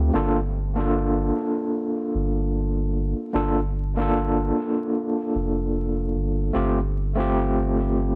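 A slow, swung 4/4 groove at 75 BPM carries this dark, melancholic trip hop passage in G minor, cut from a longer piece. An overdriven tine electric piano plays the accompaniment throughout, sitting up front with a barky, gritty tone pushed through a combo amp, shimmering with fast tremolo and trailed by tape echo. Beneath it, a soft dub sub bass holds the low end for the full 8.2 seconds, deep and round with a triangle-and-square-wave character, a fast attack and sustained notes that stay close and present. The harmony rests on Gm7 before shifting to Fadd9 at 6.5 seconds. Light reverb and a digital ambience frame the sound, while vinyl crackle lends the recording a dusty, lived-in surface.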